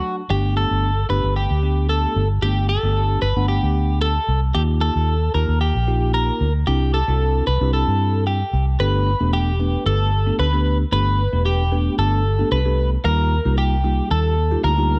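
A twelve-string electric guitar and a bell-like tine electric piano open this summery, euphoric dance-pop excerpt together, moving at 113 BPM in a straight 4/4 in G major. The guitar carries the melody in a narrow band from F#4 to B4, its picked tone bright, clean, compressed and up front, with a touch of spring reverb. The electric piano supplies clean, direct accompaniment across a broader span from F#3 to F#5, colored by a phaser. At 0.3 seconds a vintage muted fingered electric bass enters, dark, round and punchy, sitting up front as the loudest part from E1 to G2. The harmony cycles through Gadd9, Ebadd9 and Cadd9, and a new section begins at 8.8 seconds, returning to Gadd9 before moving to Ebadd9. The sound is dry and close, in the manner of a 1970s studio recording, with little room ambience.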